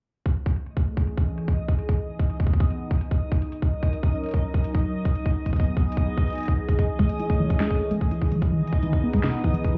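Glitchy and intricate, this IDM piece, cut from a longer work, moves through a cycle of Amaj7, Emaj7, D#m7 and G#m7 chords in a straight 4/4. A tight electronic kick sits up front from 0.3 s, joined by an organic electronic kit whose woody snare and crisp hats sit further back, low-pass filtered and trailed by tape echo; both drum parts have a tape-warm tone and were re-recorded in a small room. A swirling, warbling analog pad built from detuned sawtooth waves holds sustained chords through phaser, chorus and sidechain pumping. Above it, a reversed, granular triangle texture with a soft attack and long release adds dreamy, bright swells in its own reverb. At 7.0 s a rubbery, resonant acid bass enters with dark sawtooth arpeggios, a filter sweep, analog chorus and tape echo. The mix sounds muffled, as if heard through a wall, with club reverb.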